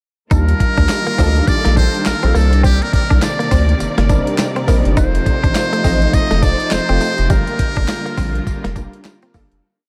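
A hard-swung, gritty sampler-style drum beat with a thumpy kick, clap-layered snare, hi-hat and tambourine drives this slick, punchy new jack swing R&B piece at 103 BPM in G minor. A round, deep analog bass bounces with muted ghost notes beneath dark, worn piano chord stabs, with a short piano fill from 3.8 to 5.0 seconds. Lush bowed strings sit in the background beside a bright, twangy direct-recorded guitar line with analog chorus, while a buzzy metal-muted trumpet plays a jazz-style motif with scooped notes and delay, and the piece fades out from 7.3 seconds.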